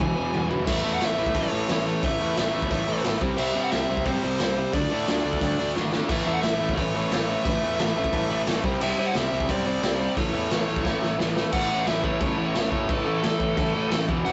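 A rough rehearsal-room recording with warm saturation, a moderate studio reverb and a muffled top end frames this short, rowdy punk rock cut from a longer piece, driving along in a straight 4/4 at 177 BPM. The raw garage drum kit sits up front, its punchy kick, medium-tuned snare, dark cymbals, hi-hat and toms sounding gritty in a small, pumping room, with fills at the opening, around 5.7 seconds and again just before the closing section at 11.5 seconds. Beneath it, a fuzzed, growly picked electric bass with a bright edge anchors the low end, while three overdriven or distorted rhythm guitars stack up the riff: a compressed, warm-toned one, a bright cranked stack further back, and a very quiet, double-tracked tight guitar. Over the top, a dark, smooth lead guitar with overdrive carries the melody in a higher register throughout. The harmony moves through E, A, C and D5 before cycling back, giving the upbeat energy a loose, garage-band feel.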